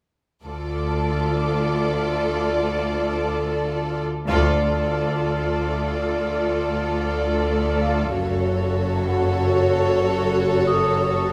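A mysterious, uneasy suspense film score cue in 3/4, cut from a longer piece, in which bowed string sections with vibrato form the core: a focused violin melody over an expressive second violin line and a smooth, lush viola accompaniment, anchored by a clear, distant cello section and a close double bass section. A high violin texture hovers faintly until 3.9 s, while a delicate, bell-like celesta enters at 1.4 s and rings sweetly in the background. A full-band accent marks the shift to a new section at 4.3 s, and a recital-hall reverb lends the ensemble a church-like spaciousness.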